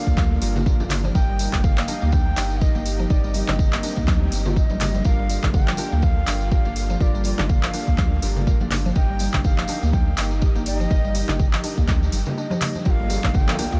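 An airy, reedy bansuri carries the melody with tape echo over a spiritual, driving afro house groove at 123 BPM, where a deep, up-front electronic kick and round sine sub bass anchor a produced afro-pop kit of handclaps and metallic hi-hats, ringing low-tuned congas and a jingly tambourine, while a woody FM mallet-like pluck arpeggiates, detuned sawtooth analog keys stab with chorus, a dark, lush bowed string section sustains chords through Gm7 and Eb/G, and a distant djembe with metal rattles joins at 13.0 s after a brief break at 12.4 s.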